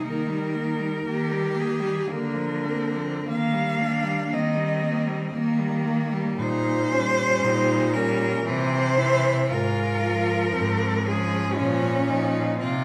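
Four bowed cellos sound together almost from the opening moment, each played by a single player with vibrato, in an elegiac, melancholic classical piece for cello ensemble that moves in a flexible, rubato three-beat metre. The melody sits on top in a rich, focused voice that is up front yet slightly distant, ranging from Db4 to F5. Beneath it, a smooth, even cello plays a close second line, while a clear cello supplies accompaniment in the lower middle register and stops at 12.6 seconds. The bass cello enters at 0.1 seconds, sounding smooth, even and far-off yet still prominent. The harmony moves from Eb through Bb/D, Bbm69, C and Fm/Ab before settling on Bbmadd11, all bathed in the wet reverb of a recital hall, and the passage is cut from a longer piece.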